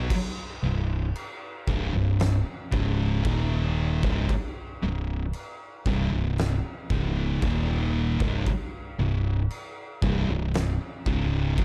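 An oversized, low-tuned acoustic drum kit sits up front in a pumping big room, its boomy kick, fat snare and dark crashes, all with a gritty, saturated edge, driving this heavy, ominous stoner and doom metal fragment, cut from a longer piece, at a crawling 58 BPM in straight 4/4. Two picked, fuzz-distorted guitars grind out a low riff in C minor, one dark and one warm, while a punchy fingered electric bass with overdrive adds weight far below. The whole passage rests on a single C minor chord through to 11.6 seconds, wrapped in a dark, warm studio ambience.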